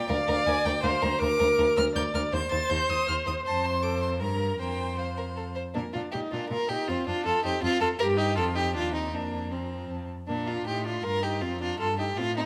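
An intense, clear violin sits up front on a second line between C4 and C5, while a close, smooth first violin with vibrato carries the melody from Bb4 up to A6 in this quick, spirited and graceful classical-period movement for string quartet, cut from a longer piece at 160 BPM in 3/4 and tuned to A4 = 444 Hz. A warm, even viola supplies the accompaniment and a rich, bowed cello anchors the bass from D2 to Bb2, the harmony moving from Bb/D through Cm/Eb, Gm and Fsus4 before a second section begins at 5.8 seconds. A moderate recital-hall reverb lends the quartet a gentle sense of space.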